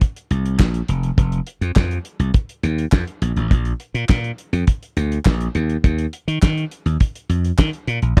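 A growly, punchy slap bass sits up front in this late-night, funky slice of early-eighties boogie funk, entering at 0.3 s with a bright tone that sounds direct and amped. Alongside it, a damped seventies drum kit plays from the very start, its dry, smooth acoustic sound built on a fat snare, a tight kick, hi-hat and crash, with dark cymbals and a rolled-off top. A crisp, human group handclap sits in the background of a small room. The harmony moves from C7(no3) to F5 before the chords fall away at 3.2 s. A detuned sawtooth polysynth comp, treated with chorus and a filter sweep, arrives only at 8.2 s as the recording is cut from the longer piece, all within a warm production and small room ambience.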